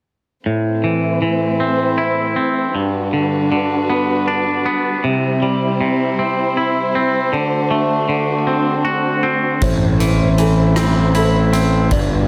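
Melancholic and cathartic, this post-rock excerpt moves slowly at 52 BPM in a straight 6/8, set in A dorian. A bowed string section holds sustained chords from the start, its soft attack and vibrato giving a smooth, expressive bed, while a twangy, bright electric guitar sits up front with clean picked arpeggios trailed by digital delay. The harmony travels through Am, Gmaj7, C and D7 before returning to Am at 9.6 seconds, where the arrangement fills out. At that point a fuzz-drenched picked bass enters up front with overdriven low notes, a soft-mallet drum kit adds hi-hat, rim click and a boomy kick with a natural hall character, and a felt-muted upright piano drifts in the background with mellow, intimate arpeggios carrying their own delay. A moderate large studio reverb gives the whole an open, spacious sound.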